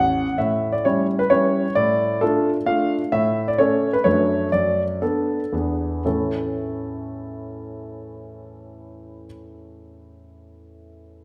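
A clear grand piano opens this short passage cut from a longer classical-period sonatina, playing alone throughout in an elegant, cheerful A major at 111-133 BPM in a straight 3/4. The solo part spans a range from A1 to F#5, with an intimate, up-front presence, long sustain and audible action noise. The opening phrase moves through A7, Dm/A and A, then D/F#, Bm7/F# and E7, and the tempo slows from 2.5 to 6.1 seconds as the phrase settles back onto A. At 6.1 seconds a contrasting second section begins and runs to about 9.2 seconds. The piano sits in a wet recital hall reverb that adds a gentle sense of space around the playing, and the instrument is tuned slightly below standard pitch, with A4 at 439 Hz.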